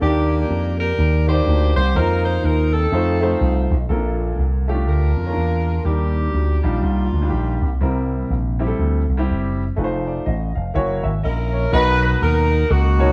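A tight saxophone section with light vibrato carries a smooth, hopeful, reverent melody over woody upright piano and a punchy, bright slap bass with an envelope filter in this swung uptempo gospel excerpt, the horns falling away at 7.8 seconds and returning at 11.2 seconds as the whole band plays live in a moderate stone room.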